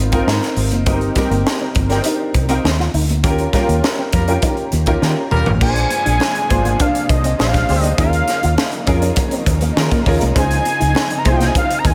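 Glossy and lightly reverberant in a small room, this breezy excerpt of polished 1980s jazz-funk pop moves at 101 BPM in a straight 4/4, with punchy up-front fusion drums, a round foam-muted fingered bass, intimate grand piano chords and a twangy envelope-filtered guitar riff in the background from the start, very quiet high-tuned congas joining at 0.9 s, a pop-style horn section adding a brief second line from 4.1 s amid band accents and a drum fill leading into the change, and a fat detuned sawtooth synth lead taking the melody at 5.6 s over lush, distant bowed strings.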